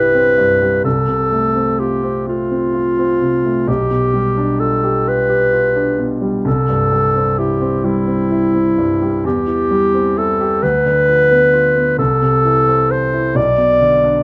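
A light reverb surrounds this romantic classical duo, with both the clarinet and the concert grand piano set up front. The mood is lyrical and warm, moving at a slow, rubato 43 beats per minute in dotted quarters in 6/8, in C major. The clarinet carries the solo melody between E4 and D5 with a mellow tone and a smooth top, played in a classical style. Beneath it, the piano accompanies from B1 to A4, its sound open and rich in deep bass. The harmony moves from C through F/C and G7/B back to C, then passes through C/E, Bdim/D and Am/C before closing on a rootless G/B at 13.4 seconds, both instruments playing across the full 14.2 seconds of this passage cut from a longer piece.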